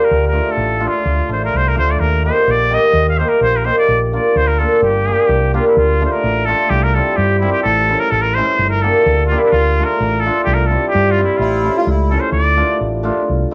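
A brisk 2/4 klezmer pulse at 128 BPM drives this festive yet bittersweet excerpt, cut from a longer piece, which starts in G minor and turns to D minor at 5.8 seconds. A cornet with a straight mute carries the melody up front in a classical style, its bright, nasal tone softened by a smooth top and gentle attack and set in plate reverb. Beneath it, a fingered electric bass gives a dark, round, punchy amped foundation, while a hammered cimbalom fills in the accompaniment with a shimmering, ringing acoustic glow. An accordion slips in briefly as a second line from 11.4 seconds, reedy and airy with a slow beating in its tone. The whole recording sits in a moderate studio room and carries the worn character of old cassette tape, with a warbly drift in pitch.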